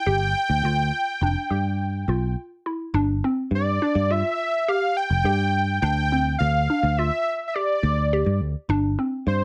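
A thick, bold unison lead built from detuned sawtooth and triangle tones sits up front, carrying the melody between C5 and G5 with a fast attack, sustained notes and vibrato. This short progressive instrumental passage, cut from a longer piece, moves at 104 BPM in 5/4 with a straight, driving and intricate feel, tuned to A4 = 441 Hz. Beneath it, a hollow square-wave pluck with a noise layer and chorus bounces through arpeggios in the C4 to G4 range, its vintage, warbling character shaped by a quick filter pluck and short decay. A picked electric bass, foam-muted, punchy and direct from the amp, holds the low end from F1 to G2 and sits prominently in the mix. The harmony opens on G7 with the third omitted, shifts to G7sus4 at 2.9 seconds as a new section begins, and settles on C5 over G at 8.7 seconds, all within a moderate studio ambience.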